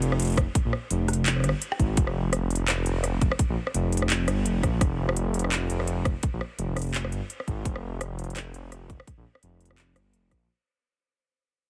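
A half-time drum and bass groove at 169 BPM in 4/4, swung on the sixteenths, drives this heavy, cinematic excerpt in F minor, cut from a longer piece and opening straight on a drop that begins to fade out at 4.8 seconds. A dark, detuned saw bass rumbles deep and up front, its unison voices beating against each other between F1 and Bb1, while a tight, layered electronic kick enters at 0.4 seconds beside a tape-warm kit of handclaps, rim clicks and crisp hi-hats. The mix is dry, with little reverb, and squeezed into a heavily compressed, radio-style sound.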